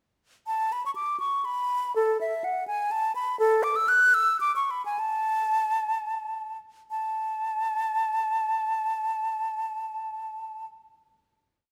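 In a rubato 6/8 that moves between 58 and 85 BPM on the dotted quarter and slows from 2.7 to 6.9 seconds, this short, radiant, dance-like baroque-style fantasia in A major is played by a solo silver concert flute, airy and mellow with vibrato and a crisp attack, close-miked and up front in a moderate recital hall reverb, spinning a melody from A4 to F#6 with leaps to bass notes before settling on a final note held from 6.9 to 10.7 seconds.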